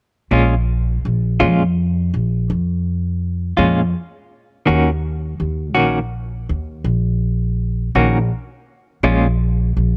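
A slow 12/8 sway carries this mournful, soulful blues, a short cut from a longer piece that moves from Bbm7 to Ebm7 and back. A clean, picked electric guitar with tremolo plays compressed accompaniment up front until 9.3 seconds, while a woody, growly pizzicato upright bass holds the low end through to 10.0 seconds. The sound is dry and close, in the manner of a 1970s studio.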